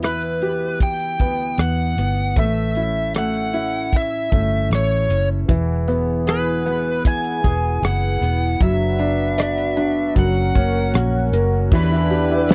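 Pop ballad at 77 BPM in 4/4, heartbroken and melancholic, with a bluesy overdriven lead guitar carrying the melody over clear concert grand piano, a fingerpicked steel-string acoustic guitar playing full-bodied arpeggios, a round, foam-muted electric bass and a damped 70s drum kit with a fat snare and dark cymbals sitting up front. A shimmering, retro pulse-width pad with chorus adds sustained chords from 5.5 seconds, and a mellow French horn section enters with a second line at 11.7 seconds as the chords move from Em through A, Eadd9, Bm/F# and F# back to Em. The sound is a dry, close 1970s-style studio recording with light reverb, cut from a longer piece.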